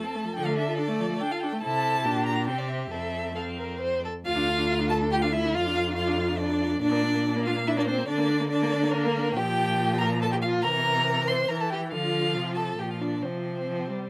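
A moderate studio ambience surrounds this quick, restless classical-period movement for string quartet in triple metre, cut from a longer piece. An up-front, focused first violin carries the melody with vibrato, while a dark second violin weaves a smooth, expressive line with soft attacks and portamento, and a more distant viola bows a rich accompaniment. The cello, also up front, joins at 0.4 s with a soft-edged, sliding bass, and the urgent mood presses on as the harmony shifts at 4.3 s.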